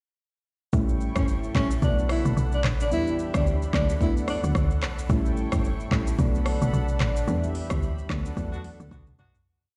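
Sultry and hypnotic, this short afrobeats piece rides a swung sixteenth-note groove in 4/4 from start to finish. An electronic afro-pop drum kit sits up front with a deep but soft kick, metallic hi-hats, syncopated rim clicks, shaker, handclaps and toms, the kit roughened by vintage 12-bit sampler grit. Beneath it a woody log drum bass bounces through punchy, decaying syncopated lines with slides. Round, gentle electric-piano-like synth keys play dark syncopated chords through a chorus, and a detuned sawtooth analog pad holds smooth, warbling sustained chords in a lush chorus above them. From 1.2 seconds a breathy tenor saxophone carries an intimate, jazz-style hook with subtone, scooped notes and light vibrato, trailed by tape echo. The track begins fading at 7.3 seconds under a band accent, with a drum fill arriving at 8.4 seconds, and a distant horn section adds mellow punches at the phrase end from 8.5 seconds, the mix set in a big, bare-sounding room.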